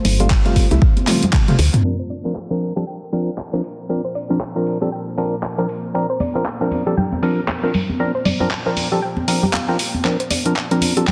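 A hypnotic, moody deep house excerpt at 117 BPM opens on a deep, detuned ambient pad, a woody FM bass, a tape-warm drum kit of handclaps, hi-hats and toms, and ringing close-miked congas and bongos, as a hollow, phased organ stab enters to stay and a deep electronic kick joins briefly before the kick and bass fall away; a soft, round pluck arpeggio enters at 2.0 s beneath a long filter sweep on the drums, pad and pluck, and the congas return at 6.2 s ahead of a drum fill and build-up at 10.0 s, the whole piece set in lush hall reverb with vinyl crackle over G9sus4 and C9sus4 chords.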